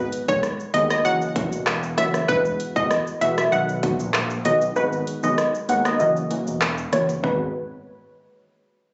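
A straight 4/4 dancehall groove at 97 BPM in G# minor drives this bouncy, tough cut from a longer piece. An up-front electronic island pop kit of tight kick, smooth hats, handclaps, rim click, shaker and toms sounds re-recorded in a large room, and the kick drops out from 4.8 to 7.2 seconds. A fat, detuned sawtooth analog bass and punchy, full-bodied chord stabs with chorus, phaser, sidechain pumping and a low-pass filter move through G#m7, F#7, Eadd9 and B under a filter sweep; meanwhile a round, bright analog pluck carries the melody up front through chorus and delay, and very quiet high-tuned acoustic bongos enter at 0.9 seconds. The recording sounds like a phone capture in a club, with plate reverb, compression and a dulled top end.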